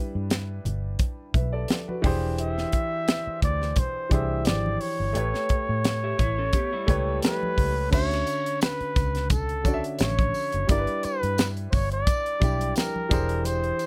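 Set in 4/4 at 87 BPM with a gentle sixteenth-note swing, this lush 1970s-style soul cut in D major moves with a smooth, romantic ease. A tight funk drum kit sits up front, dry and polished, its high-tuned snare and firm kick joined by hi-hat and crash, while close, hard-handed congas with a thin, bright skin tick along in the background. A foam-muted fingered electric bass supplies round, punchy lows beneath a natural-sounding grand piano that voices chords drifting from G6 through E7alt and A9 to a Dmaj9 at 7.9 s. From 2.4 s a breathy flugelhorn carries the melody up front, intimate and whispered, with soft attacks, scooped notes and vibrato. Between 6.0 and 7.7 s a twangy, slightly broken-up electric guitar through a small old amp adds a brief picked riff, and from 7.9 s a very quiet, jingly tambourine sounds from a distant large room. The overall mix is dry and nearly reverb-free, and the recording is cut from a longer piece.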